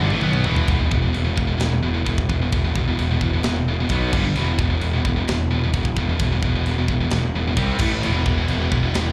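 Aggressive and dark, this heavy metal excerpt in E minor drives at 131 BPM, opening on a drum fill from a tight metal kit with bright cymbals, a tight kick and china, crash and toms, heard through a live club PA. An up-front scooped high-gain guitar riffs throughout alongside a very quiet, tight distorted guitar and a growly, fuzz-laden picked bass, while a double-tracked heavy guitar with slapback echo sits in the background, sounding only in the first 0.7 seconds and again from 8.0 seconds. The riffs churn around E5 power chords with brief moves through B5, G5, C5 and A5 before settling back on E minor.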